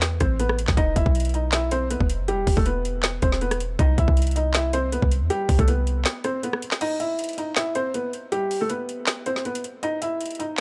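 A felt-muted upright piano opens this menacing, brooding trap excerpt, playing a soft, intimate melody over a deep 808-style bass and a trap drum kit, all starting at once. The tempo sits at 159 BPM in a half-time feel, in E harmonic minor, with chords moving through Am, E5 and C. The piano sits up front with a mellow, thin-felt tone, short sustain and audible action noise, shaded by a low-pass filter and a touch of delay. Beneath it, the clean, sine-like 808 bass lands with a fast attack and a boomy, dark decay. The electronic drums, also up front, pair a hard-clipped kick with a woody snare, metallic hats, rim clicks, handclaps and crash, all roughened by a vintage 12-bit sampler grit and set within a digital ambience. At 6.1 seconds the bass drops out for a break, leaving piano and drums to carry the second section from 6.8 seconds until the cut at 10.6 seconds.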